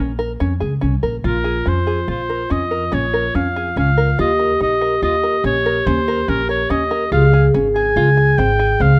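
The oboe carries the melody from 1.3 s, with a smooth top, a light vibrato and a classical style, sitting up front as the solo voice. This is pensive, restless contemporary chamber music in 7/4 at 143 BPM, in Bb dorian, and the recording is cut from a longer piece. From the start, an open-back banjo fingerpicks plunky, twangy arpeggios, while a pizzicato upright bass on gut strings gives a woody, thumpy low end that also sits up front. At 1.3 s a vibraphone played with soft mallets and its motor off enters alongside the oboe as a second line, adding a metallic, ringing glow. The harmony moves from Bbm through Bbm9 and Eb7 to Dbmaj7, captured by close, detailed microphones with light reverb.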